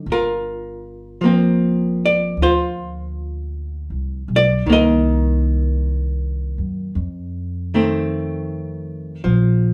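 Tender and late-night in mood, this fragment of a slow jazz ballad moves at 52 BPM in a swung 4/4, tuned to A4 = 444 Hz and passing through Gm7, Cm7 and F7. A dark, clean, picked hollow-body archtop guitar, miked and amplified, carries the accompaniment from the start, joined at 0.1 seconds by a woody, growly pizzicato upright bass on steel strings. Both instruments sit up front in a live one-room performance, wrapped in a wet studio reverb.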